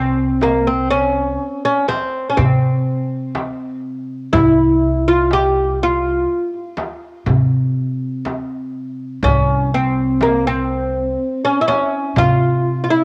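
A plucked fretless oud with double strings carries a longing melody up front over thumpy pizzicato upright bass in this hypnotic Arabic maqam ensemble excerpt in 10/8, while a crisp metal-shell darbuka and a deep frame drum join in the background from 0.4 s, all colored by moderate spring reverb and the character of a home cassette recording.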